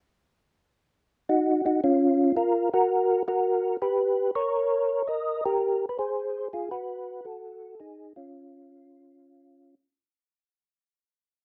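A mellow, flute-like tonewheel organ plays alone from 1.3 to 9.8 seconds, its percussive attack, chorus vibrato and slow rotary speaker placed up front and captured by close, detailed microphones with light reverb. This bluesy, swinging jazz fragment moves at 110 BPM in 4/4 with a swung eighth-note feel, passing through Bb minor, G diminished and Ab5 chords. The excerpt is cut from a longer piece and fades out over its whole length.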